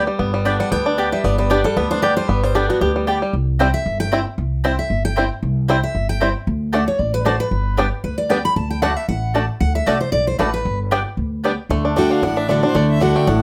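Lively and virtuosic, this bluegrass excerpt races along at 229 BPM in 4/4 with a light swing on the eighths, set in G major. A twangy, percussive banjo, played with fingerpicks, carries the melody up front. A bright, full-bodied jumbo acoustic guitar joins almost at once, and its picked solo drives the passage until 11.7 s. Underneath, a thumpy pizzicato upright bass with dark gut strings anchors the low end, while a woody double-strung mandolin adds picked stabs until it drops out at 11.5 s. At 12.0 s a clear, focused fiddle enters as a single bowed player with light vibrato, taking a short solo on the second line. Moderate studio reverb gives the close, present instruments a modest sense of room as the harmony moves between G, C and D.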